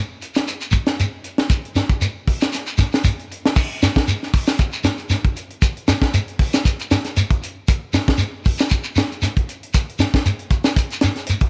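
A lightly swung 16th-note groove at 117 BPM in 4/4 drives this funky afrobeat fragment, where a tight, up-front acoustic drum kit with a high-tuned snare, tight kick, hi-hat and crash cymbal sits beside a grainy, mellow shekere in a small, natural-sounding room with light reverb, the groove shifting into a new section at 3.6 seconds.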